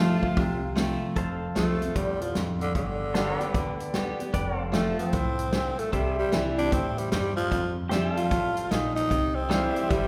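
A raspy, growling tenor saxophone opens this sunny, down-home honky-tonk excerpt in F major at once, over a full-bodied jumbo acoustic guitar with audible finger squeak, a twangy pedal steel playing sustained chords with volume swells in the background, and a woody, thumpy pizzicato upright bass, with a punchy natural drum kit joining at 0.2 s. At a swung 151 BPM in 4/4, the close-miked, up-front sax launches into a gritty, vibrato-laden solo from 1.2 s while the band moves through F, G, C and Fadd9. The whole band sits in a church-like recital hall reverb that gives the classic country sound a spacious, ringing finish.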